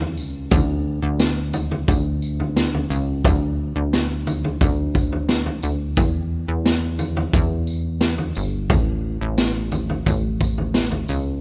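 A plucky analog bass with a punchy sawtooth and pulse-wave filter pluck sits up front beside a gritty garage drum kit with a rolled-off top, built from boomy kick, high-tuned snare, tambourine and toms, together giving this roughly 11-second dreamy, ethereal dream pop excerpt at 88 BPM a raw, dry, lo-fi home-demo feel.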